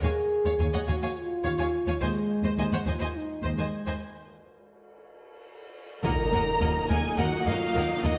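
A lush violin section carries the melody in this dark, dramatic orchestral film-score excerpt in 7/8, over a background second line of violins, distant violas, dark, tight French horn chords, and a bowed double bass and expressive cello bass. Cymbal swell and tam-tam enter at 2.0 seconds, and after a break at 4.0 seconds a band accent at 6.0 seconds brings in an airy, hollow flute, focused sustained strings and a huge, bright impact. A wet scoring-stage reverb gives the ensemble a cinematic depth.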